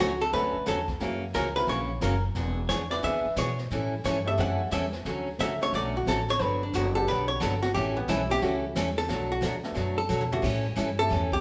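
A cheerful, swinging western swing excerpt opens with a clean, hollow-body archtop guitar solo up front over a bright, full-bodied picked acoustic guitar and a growly, woody pizzicato upright bass, while a vintage brush drum kit with dark cymbals and an upright piano with short sustain sit in the background, a drum fill arrives at 10.1 seconds, and the whole band plays live in one room with a large, wet studio reverb.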